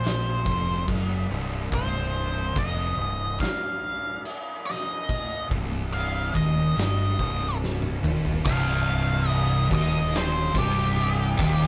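An up-front octave-fuzz lead guitar, dark and drenched in wah and distortion, carries the melody over a hypnotic, heavy stoner and doom metal groove in C minor at 71 BPM, cut from a longer piece and captured as a band playing live in one room with light reverb. Two thick fuzz guitars grind out the riff in the background, one barely audible, while a growling, bright fingered bass adds overdriven weight beneath an oversized, low-tuned acoustic drum kit with a fat snare, punchy kick, dark cymbals and a pumping room sound. After a drum fill at 7.6 seconds, a double-tracked, compressed fuzz guitar joins the riff at 8.4 seconds as the lead breaks into a solo until the end.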